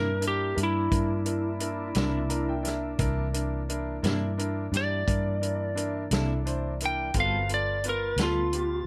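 A slightly broken-up, twangy lead guitar carries the melody of this gritty, rollicking slow blues in 12/8 at 58 BPM, over a dark clean electric guitar with tremolo, a woody upright piano that adds a fill at 2.0 seconds, a smooth tonewheel organ with key click and slow rotary speaker in the background, and a round, foam-muted vintage fingered electric bass, with a punchy, dry soul drum kit entering at 0.2 seconds as the harmony moves from C9 to G9 under light reverb in this short excerpt cut from a longer piece.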